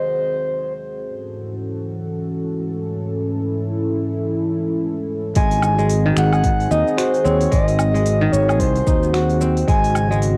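A mellow, detuned analog pad with a sub octave and sidechain pumping holds sustained chords from the start, while a breathy, flute-like synth lead with vibrato, tape echo and cassette coloring sounds briefly before falling away at 0.7 seconds, setting a mystical, meditative organic downtempo mood with a swung feel. At 5.4 seconds the lead returns with its melody, joined by crisp, ringing fingerpicked kora arpeggios, a growly, punchy fretless electric bass up front, and a deep house kit of finger snaps, smooth filtered hats, shaker and woodblock set low beneath a deep electronic kick that drops out at 9.8 seconds. This fragment of a longer piece has the hazy character of a home cassette recording in a moderate studio reverb.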